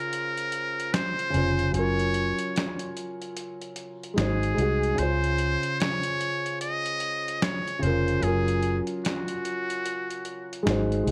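Cosy and nostalgic, this lo-fi hip hop excerpt sways at 74 BPM with swung 16ths over Dbmaj7, Gbmaj7 and Ab7 chords, as a buzzy, close-miked trumpet with a metal mute sings a jazz-style melody with vibrato; a mellow, felt-muted upright piano with audible action noise accompanies it through cassette tape and a low-pass filter; a gritty, compressed sampler-style kit with hi-hat and a fat snare, re-recorded in a large room, starts at 0.1 s; and a round, foam-muted electric bass joins at 1.3 s.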